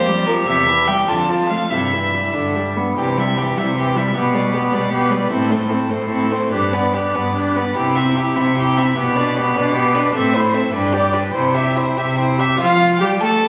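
Captured on a phone in a concert hall, with moderate reverb and audible compression artefacts, this excerpt from a quick, graceful and lively classical-period string quartet movement in C major moves in a rubato 6/8 at 93-104 BPM. Two close, period-style violins with gut-string tone carry the parts: the first sings the melody with light vibrato and a nasal edge, while the second shapes a supporting line with an airy bow. Beneath them a reedy viola supplies accompaniment, and a rich, up-front cello anchors the bass with light vibrato until 13.3 seconds.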